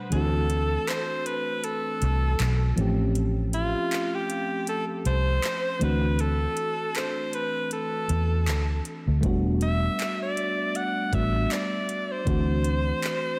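An edgy, forceful alto saxophone with vibrato and delay carries the melody up front in this moody, late-night contemporary R&B excerpt at 79 BPM with a swung 16th-note feel, over a mellow, chorused FM electric piano, a dark, round, foam-muted fingered bass, and a smooth electronic drum kit of knocking kick, metallic hi-hat and handclaps, the whole mix soaked in a dreamy 2.8-second hall reverb as the chords move from D7 through A7alt to Em11.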